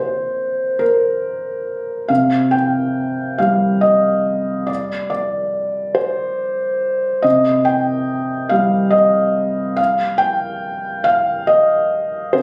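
A felt-muted upright piano plays alone from the first moment, its soft, mellow tone sitting up front in a short excerpt cut from a longer neoclassical minimalist piece. The mood is wistful and reflective, moving at a slow 47 beats per minute in a rubato 6/8 that lets the pulse breathe freely. The harmony opens on a C7 chord lacking its third, then shifts at 2.1 seconds to a Gsus4 over a C bass, and the playing ranges from C3 up to G5. The felt gives the instrument a muted, intimate character, and the natural sound keeps the action noise clearly audible beneath the notes. A light club-like reverb and the casual quality of a phone recording in the room frame the piano through to 12.4 seconds.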